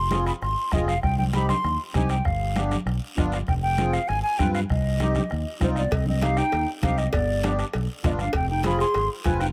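A dry, close-sounding cut from a longer cumbia piece, fiery and passionate, with a hollow, airy concert flute carrying the melody over an up-front fingered electric bass, a reedy, sweet accordion with light tremolo tuning, soft-beaten bombo, bright congas and a raspy guiro, while a mellow clarinet adds a second line from 5.6 seconds and a ringing cowbell joins at 5.9 seconds.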